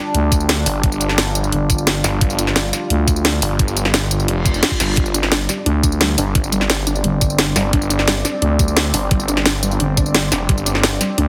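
Dark technical drum and bass with a futuristic, mechanical mood, this excerpt sets a deep, moody ambient pad of sustained chords, carrying chorus, built-in reverb and sidechain pumping, under a knocking electronic kick and an up-front kit with a cracking snare, hi-hat and tambourine. Two basses drive it: a snarling, distorted saw bass with tube saturation and sidechain pumping, and a thick, growling FM bass that drops out between 3.4 and 5.7 seconds. A reverse cymbal sits in the background from 4.4 seconds, and from 5.0 seconds a warbly, dusty, nasal pluck adds arpeggios with chorus and delay, all under light reverb and a heavily compressed, radio-like sound.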